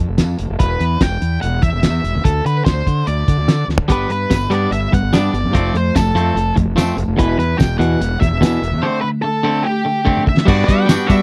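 A fuzzy, round fingered bass opens this wistful, jangly indie rock excerpt at 146 BPM in G major, joined almost at once by a muffled, cloth-damped drum kit with a fat snare and dark cymbals and by a dark octave-fuzz lead guitar melody, before a bright, twangy clean guitar riff arrives at 3.9 seconds, followed by a jingly tambourine in the background at 4.3 seconds, and a buzzy combo organ with light vibrato slips in with sustained chords at 10.5 seconds, all in a dry, close 1970s-style studio sound.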